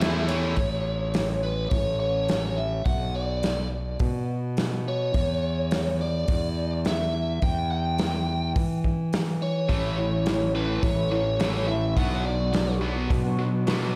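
This angsty, brooding quiet-loud alternative rock excerpt at 105 BPM in 4/4 opens with a biting, overdriven lead guitar melody up front, a growly fuzz bass and a loose indie drum kit with a tight kick and rolled-off top, while two bright, distorted guitars play a riff that drops away after 0.6 seconds. At 9.7 seconds one distorted riff guitar returns alongside a twangy, slightly broken-up guitar playing arpeggios with chorus and slapback echo in the background, and the lead, colored by slapback and digital delay, stops at 12.8 seconds. A lush hall reverb lends the mix a big arena sound over chords moving through A, Bm and Em.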